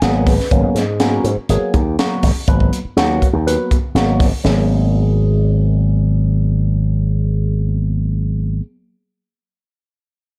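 A barky, lightly overdriven tine electric piano opens with a quick fill on a G#m9 chord, its phaser-coloured accompaniment sitting behind a punchy slap bass pushed through an envelope filter and a crisp fusion drum kit with a high-tuned snare and tight kick in a small, pumping room. This driving, nocturnal electric jazz fusion moves into a new section at 4.4 s, and the drums stop at 4.6 s, leaving the bright, up-front bass and the amp-driven keys to carry on until the cut at 8.6 s. The production is dark and warm, with studio reverb.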